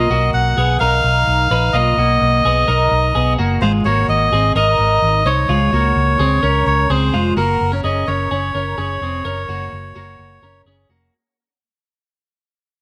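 A straight, steady pulse carries this bright, nostalgic jangly indie pop fragment, where a reedy, breathy melodica sings the melody until 10.6 seconds over clean, twangy twelve-string electric guitar arpeggios and a round, foam-muted vintage fingered bass, all three sitting up front in a small room with light reverb and vinyl crackle before the music fades out from 7.4 seconds.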